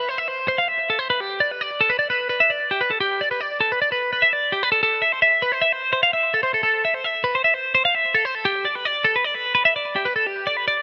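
A clean, bright twelve-string electric guitar opens this playful, intricate rock fragment on its own, picked in an odd 9/8 metre at 297 BPM in eighths with a straight feel. Its twangy, compressed tone sits up front, staying between G4 and F5 and trailing an analog delay from 0.0 to 10.8 seconds. Light reverb and a rough home-demo mix give the cut-off passage an informal, unpolished character.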